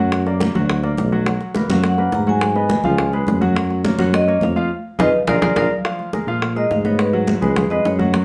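A driving, straight 4/4 groove of tight, dry bongos and bright, high-tuned congas in a larger room anchors this sultry Afro-Cuban jazz fragment, where a mellow, roomy tuba with scooped notes carries the bass up front and a natural-sounding grand piano comps beneath a metallic, ringing vibraphone that enters at 1.7 s, before a drum fill and band accent at 4.7 s give way to a vibraphone solo from 5.8 s, all in a moderate studio reverb.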